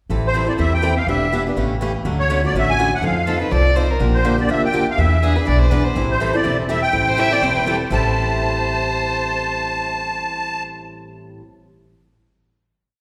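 Picked acoustic archtop guitar and upright bass open the piece together at 0.1 s, setting up a fiery, bittersweet string swing in A minor at a brisk 246 BPM with a swung eighth-note feel. The guitar is bright and boxy with fresh strings, picking four to the bar with short accents on two and four, while the gut-strung bass plucks a woody, thumpy two-beat pattern of roots and fifths, both sitting up front. Almost at once the musette accordion takes the melody, its reedy, shimmering tuning carrying hook-like motifs over chords that move from Am7 through Dmaj7, F7 and Bb6 to E7. A single bowed violin joins at 3.3 s with a nasal, boxy tone, filling the melody's rests with expressive answering phrases full of vibrato and portamento. The short whole piece resolves on a sustained final chord from 7.9 s, all heard within the wet, lingering reverb of a recital hall, with a faint mains hum beneath.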